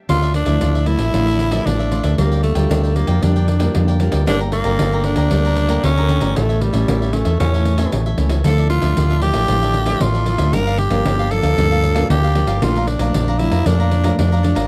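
From 0.1 s a growling, raspy tenor saxophone takes a close-miked, jazz-style solo up front, full of vibrato and scooped notes, over a lively, joyful samba and choro groove at 115 BPM in D harmonic minor, carried by a round, dark hollow-body electric bass, crisp picked cavaquinho, a fingerpicked nylon-string guitar with audible finger squeak sitting in the background, and a jingly pandeiro, caught in a dry, close 1970s-style studio sound with small room reverb.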